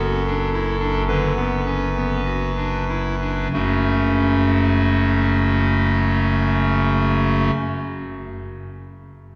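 In a straight 4/4 at a slow 45 to 57 BPM, this grave, dark chorale-style classical piece slows during its opening 3.5 seconds. A pipe organ plays alone on a clarinet reed stop with a hollow, baroque-voiced tone and a touch of chiff at the start of its notes, ranging from F#1 up to B4 and sitting up front as a solo stop. The harmony moves from Bm/F# to F#m at 3.5 seconds, opening a second passage in F# minor, and the organ falls silent at 7.5 seconds. A cathedral reverb lasting about 4.2 seconds surrounds the sound, which is heard from further back in the room. Tuned to A4 = 441 Hz, this brief fragment is cut from a longer work.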